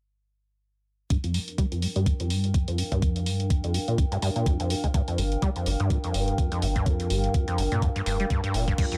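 Gritty, hypnotic acid house in G minor at 125 BPM with a swung 16th feel opens at 1.1 s on a Gm7, where a squelchy, resonant sawtooth acid bass riff, carrying overdrive, chorus, delay and sidechain pumping, rides a filter sweep over a thumpy, tape-warm kick and the crash and hi-hat of a punchy analog drum machine. A detuned, lo-fi pad soon adds a warbling, nostalgic haze. A deep, saturated triangle sub bass thickens the low end from 5.2 s, and a smooth, mellow analog pad slips into the background at 8.8 s, with light reverb around the mix.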